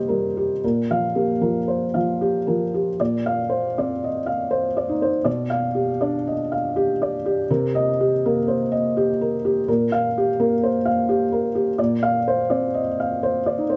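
A rubato passage in 3/4 drifts between 73 and 86 BPM, setting a peaceful, intimate mood for this short neoclassical minimalist piano piece in Bb major, cut from a longer work. A felt-muted upright piano plays alone from 0.0 to 13.8 seconds, its soft, dark, boxy tone with short sustain sitting up front in light reverb, ranging from Bb2 to F5. The harmony circles through Cm7, Gm7/Bb, Bbadd9 and G7/B, and a restatement of the opening material begins at 3.0 seconds.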